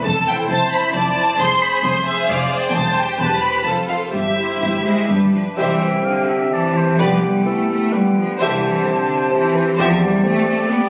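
Captured on a phone in the room, this recording carries a compressed, club-like reverb layered over a moderate scoring-stage ambience. It is a restless, urgent classical fragment cut from a longer piece, in 3/4 and C major, moving with a rubato feel between roughly 122 and 137 BPM. A warm, up-front violin section sings the melody with vibrato, while a second violin section adds a rich, even line just beneath it. Clear, distant violas fill in the accompaniment, lush cellos and smooth double basses anchor the bass, and the harmony drifts from Fmaj7 through Fm toward G. At 5.6 s the music settles onto C as new colours join: an airy, close-miked concert flute and a mellow, roomy oboe add second lines, a vintage-toned bassoon supports the accompaniment, and a dark French horn section holds soft-attack sustained chords until the end.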